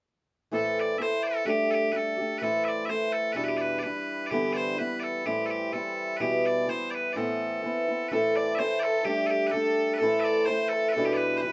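Driving and wild, this Celtic polka cut from a longer piece moves at 126 BPM in 2/4 with a light swing, circling through chords in A minor. Bright, piercing bagpipes carry the continuous melody up front from 0.5 seconds, over a boxy, fingerpicked acoustic guitar that is also up front. A nasal, reedy fiddle with a gut-string tone enters at 8.1 seconds as a bowed second line, and the whole band plays live in one small room with moderate ambience and a softened top end.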